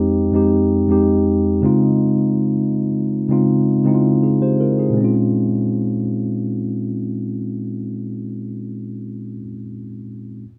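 A mellow tine electric piano carries this R&B fragment at 81 BPM in Bb dorian, its clean, up-front tone heard through built-in speakers and set in a moderate concert hall reverb. Moving from Fm7 to Dbmaj7 and then to Bbm7 at 5.0 seconds, the accompaniment spans F2 to C5 and creates a longing, sensual mood. This brief passage is cut from a longer piece and plays for 10.5 seconds.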